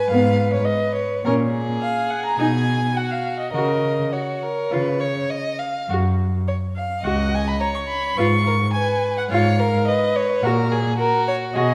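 This quick classical-period movement for string quartet is lively and cheerful, moving at 106 BPM in 4/4 with a flexible, rubato feel in F# major. The first violin carries the melody with a warm, smooth, vibrato-laden bowed tone, while the second violin adds a rich, even second line just beneath it; both sit up front. The viola supplies accompaniment with a dark, woody sound that sits more distant in the blend, and the cello anchors the bass with a smooth top and a steady, even vibrato, also placed up front. The violins open the excerpt, with viola and cello joining a split second later, and all four then sound together through the rest of the 11.7 seconds as the harmony passes through A#m7 and B, reaches C#7/G# at 8.2 seconds, and settles onto F#/A#. A moderate recital hall reverb and a dusky, mellow production give the ensemble a cozy, rounded glow.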